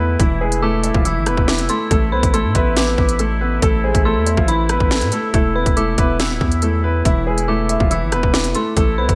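An intimate concert grand piano with audible action noise carries the melody through a low-pass filter and digital delay, joined from the start by a dark, mellow second grand piano with analog chorus, a tight classical-style woodwind section holding sustained chords with light vibrato, and a deep, sine-toned 808-style bass. An up-front electronic drill kit with a hard-clipped kick, sharp snare, crisp hats, rim click and gated reverb enters at 0.2 s, and an eerie, inharmonic FM synth bell with chorus and delay sits in the background from 0.6 s. The ominous 140 BPM half-time drill excerpt moves from Esus4 to Amadd9 and back, set in light small-room reverb with bright 1980s-style digital production.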